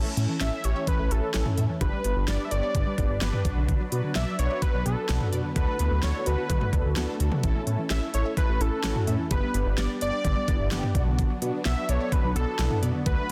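Upbeat yet wistful, this synth-pop excerpt moves at 128 BPM in a straight 4/4, cycling through A, G, B minor and D6 chords. A chorused synth bass with a glossy, retro pulse-wave tone sits up front, joined at 0.2 seconds by an electronic pop drum kit with a knocking kick, fat snare, crisp hats and toms. From 0.4 seconds a thick, bold unison lead carries the melody with vibrato and tape echo. Mellow synth brass, round and detuned, supplies accompaniment through chorus and phaser, while a swirling phased analog pad holds sustained chords in the background. A lush, punchy unison pluck adds decaying arpeggios with tape echo behind them, and the whole mix rests in light digital ambience under a dense, heavily limited modern master.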